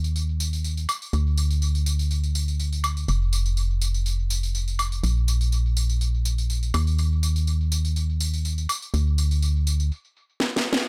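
Piano house at 123 BPM with a light 16th-note swing, this feel-good, joyful excerpt pairs a hollow, dark, organ-like FM bass with fast-attack decay, running from F1 to Eb2 until a stop at 9.9 seconds, against up-front electronic tambourine, woodblock and a cracking, tape-tinged snare drenched in dub echo, which closes with a drum fill from 10.4 seconds in a dry, echo-heavy mix.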